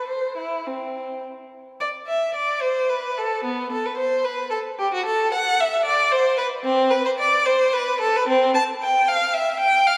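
A single bowed violin, rich and expressive with vibrato and portamento, sings up front yet distant through a wet church reverb in this serene, radiant excerpt from a baroque-style suite movement for unaccompanied violin, moving in a rubato 3/4 at around 103-115 BPM across a range from B3 to A5.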